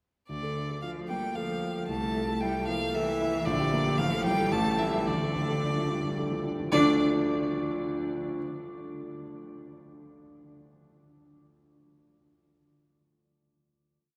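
Bathed in a cathedral-like reverb, this brief, stormy classical-period movement for piano trio in a quick triple metre sets a clear, up-front violin melody over a rich cello line that doubles the tune at the octave with expressive portamento, while a warm concert grand ripples beneath in open, deep-bassed figuration that carries into the final chord at 6.7 s and sustains alone from 7.0 s.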